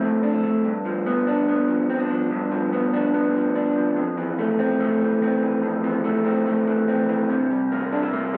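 Captured on a phone in a modest studio room with a touch of reverb and compression, this lo-fi clip puts a dark, slightly broken-up electric guitar up front, picked through a small old amp. It's a short fragment of indie pop at 144 BPM in F major, with the lone guitar moving through Fmaj7, G7 and C7 for a youthful, nostalgic feel over its 8.4 seconds.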